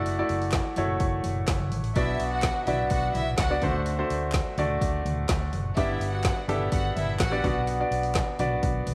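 Dramatic and earnest, this short piano-driven pop excerpt moves at 126 BPM in a straight 4/4, with a clear, up-front concert grand carrying the accompaniment across its full length, its deep low end and short sustain giving the chords a polished edge. Beneath it, a vintage muted electric bass sits dark and round, foam-muted and punchy, while a deep house drum kit with a punchy kick, woody snare and dark hats adds produced, layered electronic weight, re-recorded in a small room. A very quiet group handclap, crisp and human, joins at 0.5 seconds. At 2.0 seconds a smooth, close violin section enters as a second line, bowed and even, with vibrato, before dropping away at 7.5 seconds. The harmony moves from Dadd9/F# through Bm, D7 and G back to Bm, all set in a moderate echo chamber reverb with small room ambience.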